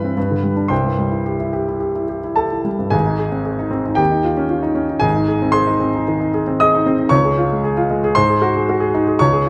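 The rhythm moves in a flexible rubato over a steady four-beat metre, giving this brief fragment of a virtuoso classical piano study a heroic, brilliant character. A solo grand piano carries the entire passage, reaching from Ab1 in the deep bass up to Eb6, and its tone is warm, intimate and natural, with the audible action noise of the instrument adding texture. The piano sits up front, captured by close, detailed microphones and set in a moderate scoring-stage reverb that lends a sense of space. An opening passage moves through G and C chords before a new section begins at 2.9 seconds, settling onto Ab and then passing through Eb9, Ab and Db harmonies. The passage closes on an Ab7 chord at 8.2 seconds, leaving the music poised to continue.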